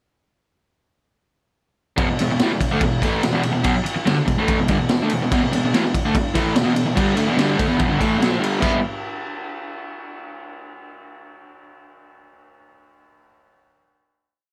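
A straight 4/4 garage stomp groove drives this short, complete piece at 144 BPM in E minor. It is a gritty, raw duo-or-trio sound. From 2.0 seconds an overdriven electric guitar, double-tracked and picked, plays a power-chord riff spanning E2 to E4 over an E minor chord, sitting up front in the mix. The acoustic drum kit enters at the same moment with a punchy kick, a medium-tuned snare, crash and ride cymbals, all saturated and mid-forward with a rolled-off top that evokes a small room. Light reverb lends a touch of space, and the riff section gives way to a final chord that closes the piece at 10.3 seconds.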